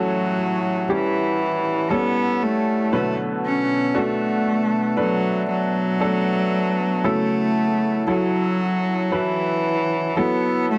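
Pop ballad, emotional and heartfelt, cut from a longer piece, in which a single bowed cello carries the melody up front with a nasal, intense tone and light vibrato. A worn, slightly detuned upright piano also sits up front, woody and brilliant with audible action noise, while a glass harmonica holds pure, ethereal chords with slow attacks in the background. The dark production has light reverb as the harmony moves from A7 to Bm7 at 2.9 seconds and F#m7 at 7.0 seconds.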